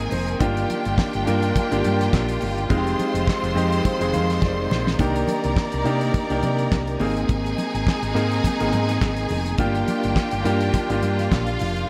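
A grand piano fill with audible action noise opens this driving, danceable disco excerpt at 104 BPM with a light sixteenth-note swing, as the up-front, intimate piano settles into accompaniment over lush bowed strings, one section carrying a clear second line while a more distant one holds sustained chords, with a round, hollow-body fingered bass and a dry, damped drum kit with a fat snare, tight kick, hi-hat and handclaps, plus very quiet, bright congas, all moving through Ebmaj9/G, Fm7, Cm9 and Ab in a dry, nearly reverb-free room, with another piano fill at 3.8 seconds and a drum fill at 4.4 seconds.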